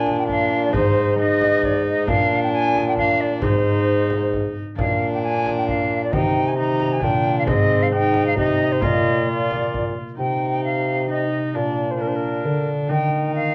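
A festive, courtly renaissance-style consort dance in three, cut from a longer piece, in which a pure silver concert flute carries the melody over a nasal, gut-string viola second line, ringing fingerpicked concert harp and a mellow, up-front bassoon bass, while a deep, distant frame drum sounds from 0.1 to 10.0 s before a new section begins at 10.2 s, all softened by light reverb and the worn, warbling pitch drift of old cassette tape.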